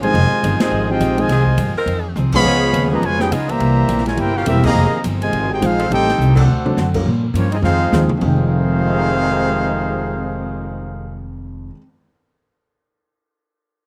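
Dry, outdoor sound with little reverb frames this brassy, swinging big band jazz excerpt in F minor at 208 BPM, where a clear, tight trumpet section with slapback echo leads the melody up front over a trombone section with light vibrato on a second line, a woody pizzicato upright bass, a grand piano with audible action noise in the background, a very quiet picked jumbo acoustic guitar with finger squeak, a polished drum kit with dark cymbals and a punchy kick, and a bright saxophone section holding chords from 0.6 to 6.4 seconds, punctuated by band accents and drum fills.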